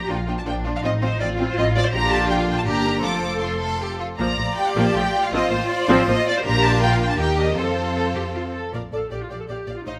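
Opening with a distant, expressive violin section singing the melody with portamento over a focused, up-front double bass section and a woody cello section, this lively, graceful classical-period movement for string orchestra moves in a quick, rubato triple metre as a rich second violin line and a smooth, even viola accompaniment join almost at once, the ensemble placed in a moderate recital-hall reverb and caught by close, detailed microphones in a passage cut from a longer piece.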